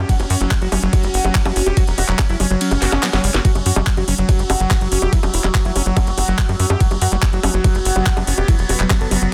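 Dense, dry and heavily limited, this short cut from a longer psychedelic trance track has a driving, psychedelic push in a straight 4/4. An up-front, knocking electronic kick anchors a layered garage kit of cracking snare, metallic hi-hats, ride cymbal, handclaps and bongos, both carrying a tape-tinged character. Underneath, a tight, punchy sequencer bass of sawtooth and square tones plucks through a moving notch filter, while a squelchy, resonant acid bass riff grinds with distortion and sidechain pumping. A gritty, guitar-like synth lead screams out the melody with chorus, phaser, vibrato and dub echo, and a sawtooth-and-sine drone holds sustained chords in the background with shifting overtones, chorus and its own reverb. The kick drops out from 2.6 to 3.4 seconds as a drum fill and a very quiet electronic swell arrive at 2.8 seconds.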